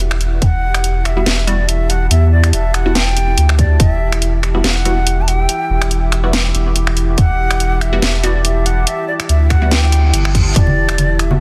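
Deep dubstep at 142 BPM in E minor, brooding and cavernous, built on an Emadd9 chord, with a round, up-front sub bass and a dark, detuned sawtooth pad sustaining alongside a breathy, bright ney melody with vibrato and dub echo, while a nasal, filtered chord stab with phaser sits in the background from 1.2 seconds, a garage kit of finger snaps, bright hats and a cracking, softly clipped snare swings in half-time, a tight electronic kick drops in and out, a reverse cymbal enters at 9.9 seconds, and soft-handed congas enter at 10.6 seconds in this dense, heavily limited excerpt from a longer piece.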